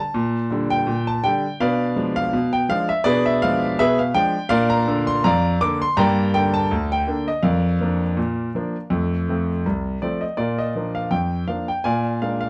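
A solo concert grand piano carries this lively, cheerful ragtime fragment, its tone smooth and vintage with a deep bass and placed up front in the mix. The playing moves in a two-beat metre at 82 BPM with a light swing on the sixteenth notes, ranging from the low C2 up to D6. The harmony opens on Gm/Bb and a Bdim7 before settling at 4.5 seconds, then moves through Gm, Bb/F and F. A fresh section arrives at 10.4 seconds, returning to Bb and turning to Bb7 just before the clip, cut from a longer piece, ends at 12.5 seconds. A moderate small-room reverb and a dark, warm production give the sound a cosy, old-fashioned intimacy.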